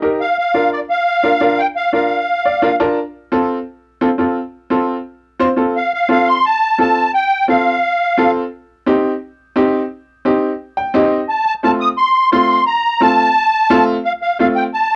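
Danceable and sunny, this brisk Latin excerpt at 173 BPM in straight 4/4 puts a reedy, shimmering musette accordion melody up front in short phrases over a woody, brilliant upright piano accompaniment that adds brief fills at 2.3 and 10.6 seconds, moving through Bb, F and C minor with the vintage grain of a cassette home recording, faint mains hum and moderate studio reverb.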